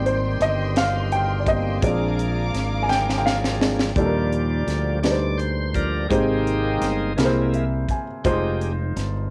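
Slow gospel in a straight 6/8, hopeful and uplifting, with a dark, intimate baby grand piano taking the lead for the first 4.0 seconds, backed by a shouting, lightly overdriven tonewheel organ through a slow rotary speaker, lush bowed strings that drop out at 3.9 seconds, a bright, up-front fingered electric bass and a crisp fusion drum kit with a punchy kick and high-tuned snare. After a drum fill, the organ takes over the lead at 4.0 seconds, with the piano adding a short fill along the way. This short cut from a longer piece has a home-cassette character and moderate studio reverb, and the harmony moves through rich seventh chords, including an augmented seventh near the end.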